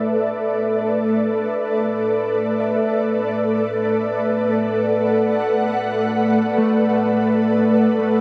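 Melancholic and reflective, this brief ambient passage in free time is cut from a longer piece and sits in a vast, echoing space soaked in huge reverb. An ethereal, airy pad sits up front from the start, holding sustained chords with a mellow, detuned character, ensemble chorus and tremolo, moving from Asus24 to Bm7/A at 2.1 seconds. At 2.6 seconds a ringing, thumb-plucked Celtic harp joins in the background with arpeggios trailed by a diffuse delay.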